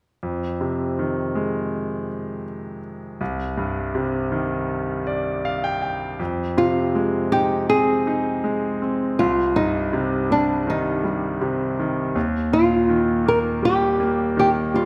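Pop with an emotional, heartfelt mood, built on a brilliant concert grand piano whose deep bass and long sustain carry the accompaniment through Fm7 and Cm chords, adding a fill from 4.7 to 6.2 seconds. At 6.6 seconds a small, dark nylon-string guitar enters up front with a fingerpicked melody, finger squeaks audible, and the harmony later moves on to Ebadd9. A moderate scoring-stage reverb surrounds the polished piano in this short cut from a longer piece.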